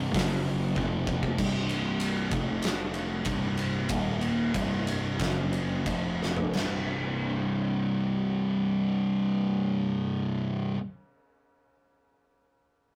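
A straight 4/4 stoner and doom metal groove that slows down between 1.4 and 6.5 seconds carries an ominous, sludgy mood, as an oversized low-tuned drum kit with a punchy kick, fat snare and dark cymbals sits gritty and up front with fills until it stops at 6.7 seconds, while two dark, picked fuzz guitars grind out the riff in the background over a growly, overdriven fingered bass, all captured in a rough rehearsal-room recording with light reverb and warm saturation in this excerpt from a longer piece.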